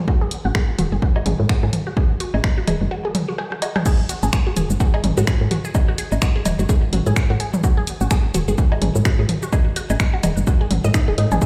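Hypnotic and cool, this minimal techno excerpt cut from a longer piece runs at 127 BPM with a 16th-note swing, as an up-front punchy electronic kick and a soft, woody FM bass with tube saturation and sidechain pumping anchor a squelchy, resonant blip pluck riff carrying phaser and digital delay, while a tape-warm analog drum machine adds hi-hat, shaker, finger snaps, rim clicks and crash and delayed electronic toms and woodblock fill in the grid, all heard through a big sound system in a bare stone room, with a break at 2.9 seconds and a drum fill leading into the drop at 3.9 seconds.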